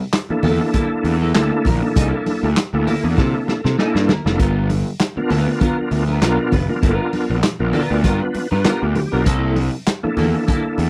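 Funk at 99 BPM with a swung sixteenth feel, playful and energetic, where a bright, reedy tonewheel organ with key click and fast rotary speaker punches stabs up front over a fuzzy, overdriven picked bass and a muffled, lo-fi vintage kit of tight kick, snare, hi-hat and handclaps, while a twangy clean electric guitar with ensemble chorus comps as ringing congas sit in the background, all in a dry, close 1970s-style room, with a drum fill from 3.2 to 4.4 seconds, an organ fill from 7.4 to 9.3 seconds, and harmony moving from a rootless C13 to G7#9 and back.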